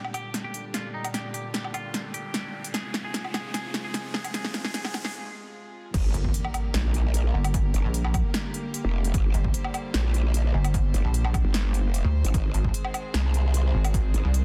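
A dense, heavily limited, dry mix carries this heavy, aggressive half-time wobble dubstep excerpt, where a bright, twangy electric guitar with dub echo plays until 5.1 seconds over rich, earthy chamber strings pumping under sidechain and a crisp, overdriven dance kit of snare, hi-hats, crash and woodblock, while a background riser builds toward the drop at 5.9 seconds, which lands with an impact, a punchy overdriven kick and an up-front growling, formant-filtered bass, joined moments later by a pulsing, detuned pluck wobble bass, both saturated and chorused.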